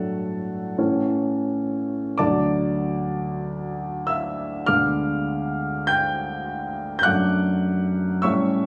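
Heard through a phone in the room, this recording carries club reverb over a moderate large-studio reverb with a 1.2-second decay, compression and a faint mains hum beneath the music. It is a brief romantic nocturne for solo piano, cut from a longer piece, with a tender and serene mood. A warm grand piano sits up front, sounding present and polished as it spans from D2 up to G6. The playing moves in a slow 4/4 with a rubato feel. The harmony drifts from D/A through A and D, darkens on a Ddim7 at 4.7 seconds, and settles on D/F# at 7.1 seconds before the fragment breaks off at 8.7 seconds.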